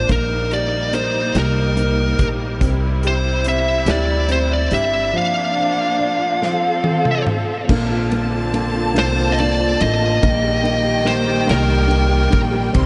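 A fuzz-soaked electric lead guitar, compressed and up front with distortion and analog delay, carries the melody of this tender, romantic six-eight pop ballad at 48 BPM, cut from a longer piece and moving through chords such as Eb/Bb, C and Bbadd9. A dark, mellow baby grand piano with audible action noise, a lush bowed string section, a woody pizzicato upright bass and a smooth acoustic drum kit with a tight kick support it, with a drum fill from 6.4 to 7.7 seconds leading into a new section where an expressive violin section adds a high second line at 7.7 seconds. The dreamy mix is soaked in a huge ambient reverb with a rolled-off top.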